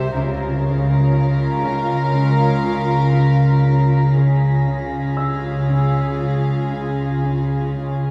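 At 58-61 BPM in a straight 4/4, this short excerpt of suspense film score moves with a slow pulse, mysterious and ominous in mood. Its foundation is an up-front double bass section, dark and floating with soft sul tasto bowing, joined by a rich, distant cello section on the bass line and a very quiet cello section playing a Db3 riff from 0.2 seconds. Above them, a violin section carries the melody between E5 and F5 while a second violin line sits from Ab4 to C5, both bowed sul tasto with a pure, soft-attacked tone, and a woody viola section with vibrato and a smooth top adds lush accompaniment in the background. High textures come from an intimate studio violin section with light vibrato around Bb6 and B6 and a polished, very quiet grand piano spanning Bb4 to Bb6. The harmony settles on Bbm/Db at 0.2 seconds, and a wet church reverb with a 3.8-second tail surrounds the ensemble with the ambience of a church or concert hall.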